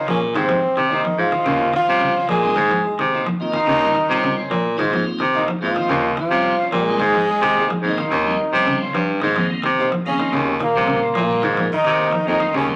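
A bright, up-front trombone carries the melody of this joyful, funky afrobeat excerpt from the first moment, over a raspy, gritty tenor saxophone and a veiled, bucket-muted trombone section in the background, slightly broken-up twangy guitar stabs, and a clean, picked electric guitar playing arpeggios through spring reverb. A clear, punchy baritone saxophone with vibrato holds down the bass line as the harmony alternates between Ab6/9 and Eb13. A piping tonewheel organ with key click and slow rotary speaker joins at 1.9 seconds, all set in a rough rehearsal-room recording with saturation and a wet studio reverb.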